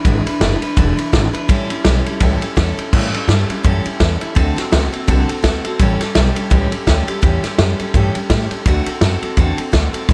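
The recording has a close, small-room sound, with the drums and acoustic guitar placed up front. This rollicking, upbeat rockabilly clip is cut from a longer piece and moves in 4/4 with a swung eighth-note feel. A bright, full-bodied dreadnought steel-string guitar is picked as accompaniment. Beneath it, a pizzicato upright bass on gut strings gives a woody, thumpy low end. The vintage kit brings a punchy kick, a medium-tuned snare, and dark crash and ride cymbals with a rolled-off top. The chords run through dominant sevenths, moving from E7 to A7 at 1.5 seconds, then to D7 at 4.4 seconds, and back and forth between A7 and D7 to the end.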